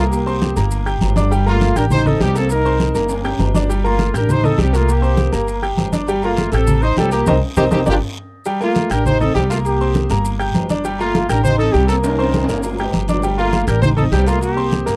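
A dry, close 1970s-style studio sound with little reverb frames this fiery, danceable salsa excerpt in G minor, moving at 201 BPM in a straight 4/4. A punchy horn section carries the melody up front with a light vibrato, while a brilliant upright piano with long sustain fills in the accompaniment and a woody pizzicato upright bass with steel strings anchors the low end. Low-tuned congas played with soft hands sit in the background, joined by ringing agogo bells and timbales that sound distant, as if in a large room, along with a raspy guiro and grainy, mellow maracas. The harmony circles through Gm7, Am7b5 and Cm7 across two matching passages, with drum fills around 3.0 and 12.0 seconds and a band accent at 7.3 seconds.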